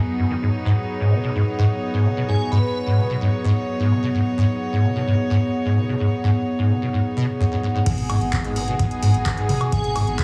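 Gritty and driving, this acid house excerpt opens with sustained bowed chords from a reedy, gut-string chamber string section with vintage sampler grit and a warbling, nostalgic lo-fi pad, joined a moment later by a squelchy, resonant sawtooth acid bass riff sitting up front with tube saturation, chorus and digital delay, all three pumping with sidechain. An airy, detuned lead with vibrato sings a brief melody at 2.3 seconds and returns near the end. At the drop at 7.9 seconds, an overdriven deep kick and a booming analog drum machine with metallic hats, handclaps, toms and woodblock arrive alongside a thick, saturated sub bass, all under a heavily compressed, radio-like sound in modest studio ambience.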